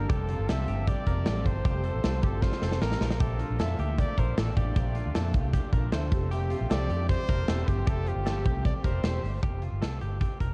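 Jangly indie pop with a bright, nostalgic mood, cut from a longer piece and bathed in a dreamy, reverb-soaked cassette-tape mix with a cathedral-like space. A clear, close-miked trumpet carries the pop-style solo melody with light vibrato and tape echo. Behind it, a shimmering, octave-doubled twelve-string acoustic guitar picks its accompaniment through an ensemble chorus, while a very quiet vintage string machine voicing violas holds mellow, soft-attack sawtooth chords with a moving notch. A direct-recorded clean electric guitar adds twangy, compressed arpeggios touched with subtle chorus and tape echo. Underneath, a dark, round, foam-muted fingered electric bass sits up front beside a big rock drum kit with a punchy kick, medium-tuned snare and hi-hat, which plays a fill from 2.4 to 3.2 seconds. The harmony moves from Fadd9 to Bbmaj7 and back, and once the trumpet, acoustic guitar and strings fall away, the bass, drums and electric guitar close on Fsus2.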